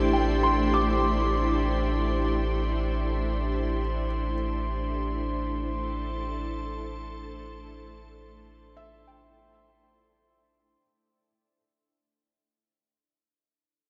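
In free time and a melancholic, serene ambient mood tuned to A4 = 439 Hz, this excerpt rests on a single Am7 as a bright, detuned organ-like pad holds sustained chords up front with ensemble chorus, a round sine sub bass sits on a deep A1, a glassy, beating glass harmonica adds ethereal texture, and a felt-muted upright piano plays mellow arpeggios in the background through a diffuse delay, lingering until 11.6 s after the other parts stop at 10.8 s, all fading out inside a wet cathedral reverb with a dark production.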